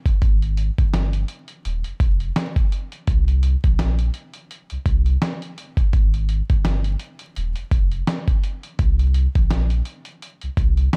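Boom-bap hip-hop at 84 BPM in 4/4, this short cut from a longer piece carries a tough, reflective mood with a 58% swing on the sixteenths. A dusty soul sampler-style drum kit of kick, snare and hi-hat sits up front, sounding compressed and gritty, with a thumpy kick and a medium-tuned snare that carry the grit of being re-recorded in a small room. Beneath it, a deep, round sine sub bass with a fast attack and sustained notes moves between Eb1 and C2, also placed up front. The drums and bass enter almost together at the start and run through the full 11.0 seconds as a single section. The production is dark, warm and dry, with little reverb and a layer of vinyl crackle.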